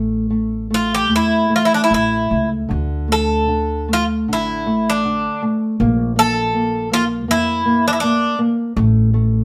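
Mournful and passionate, this short fado-style ballad excerpt moves with a free rubato feel as a metallic, double-strung Greek bouzouki with some octave-doubled strings carries the up-front melody from 0.7 to 8.4 seconds over a small, thumb-plucked nylon-string guitar and a dark, woody pizzicato upright bass, all heard as a band playing live in one room with moderate studio reverb.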